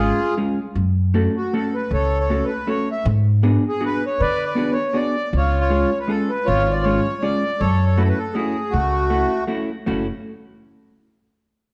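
A reedy accordion carries the melody up front, its slow beating tone airy and tinged with nostalgia as it spins through this whirling musette waltz in a swung three. Beside it, a clean, picked hollow-body electric jazz guitar supplies dark accompaniment, and a woody, thumpy upright bass plucked on gut strings anchors the low end, both placed close and present. The harmony moves from C# to F#m, then through G#m7b5 and back to C# before settling on F#m7. The accordion drops out at 9.4 seconds, leaving guitar and bass to carry on until 10.1 seconds as the music crosses into a new section. A moderate recital hall reverb and a dark, warm production with nothing above 10.8 kHz frame this short passage cut from a longer piece.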